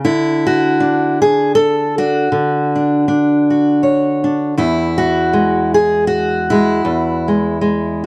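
Warm and pastoral, this brief folk excerpt features a single fingerpicked steel-string acoustic guitar, up front and close, with audible finger squeak, moving from Dmaj7 to Eadd9 at 4.6 seconds in an unhurried 3/4 at 79 BPM with a light swing, spanning E2 to C#5 in a dry 1970s-style studio sound touched with light reverb.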